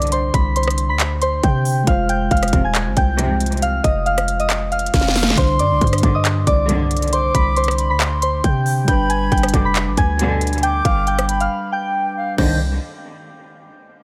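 Trap-flavored hip hop in C harmonic minor, this half-time excerpt at 137 BPM carries a melancholic, menacing mood, cut from a longer piece. A soft, pure FM synth bell sits up front with the melody, its chorused tone gentle and mellow, over a mellow tine electric piano that adds clean, phased accompaniment. Dark, bowed studio strings played sul tasto float beneath in smooth stabs with digital delay, while a hard-hitting 808-style bass delivers punchy, heavy sine lows with a noise layer and decaying tail. The electronic trap kit is produced and forward, with a hard-clipped kick, sharp snare, crisp hats, handclaps, rim clicks and crash, marked by a drum fill at 4.9 seconds and a break from 11.5 seconds. At 5.4 seconds an airy, distant concert flute enters with a tongued, vibrato second line touched by delay, as the harmony moves from Csus2 through Fm, Cmadd9 and G, all set in a digital ambience.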